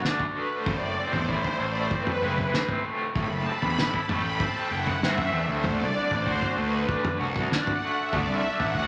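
A vintage string machine voicing violas carries the lead in this psychedelic rock excerpt, entering at 0.4 seconds with slow-attack sawtooth chords thickened by ensemble chorus and sitting up front in the upper register. The mood is trippy and mysterious at a straight 96 BPM in 4/4, with the harmony moving from D to Amadd9 and back to D. A raw, bright garage guitar plays a double-tracked riff from the start, picked and overdriven with a tremolo effect. A cloth-damped drum kit sounds muffled and lo-fi, pairing a fat snare and tight kick with toms in a gritty, rolled-off, small-room character. A round, fuzz-laden picked electric bass joins at 0.7 seconds in the low register. A moderate large studio reverb wraps the whole band in a shared space.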